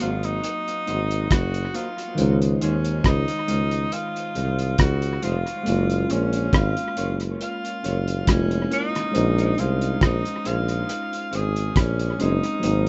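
A rough home demo sound with little reverb and a dull, rolled-off top frames this short, romantic lovers rock reggae excerpt, moving at a relaxed 69 BPM in 4/4 with a gentle swing on the sixteenths. A cloth-damped, thuddy drum kit sits up front, its tight kick, hi-hat and rim click sounding muffled, gritty and saturated, while a mellow tuba carries the bass line just as prominently with a light vibrato. A clear tenor saxophone sings the sweet melody from a distant, roomy place, colored by tape echo and its own light vibrato. Behind it, a worn, slightly out-of-tune tine electric piano played through a combo amp fills in the accompaniment with dub echo, and a dark, clean electric guitar adds very quiet fingered stabs until 12.5 seconds. The harmony drifts through Ab9, Dbmaj9, Gbmaj7 and Bbm11, giving the whole fragment a tender, lilting glow.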